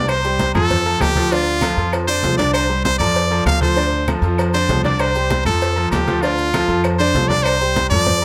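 Salsa with a joyful, festive mood, led by a brilliant, punchy trumpet solo with light vibrato, up front over a bright grand piano whose action noise can be heard and a thumpy, gut-strung upright bass played pizzicato. Underneath sit congas with a thick, low-tuned skin, a tight, high-tuned cowbell and ringing agogo bells and timbales, all in the background, along with very quiet, dry woody claves and very quiet grainy maracas. The chords cycle through Dm, F6 and Csus2 under light reverb in this short cut from a longer piece.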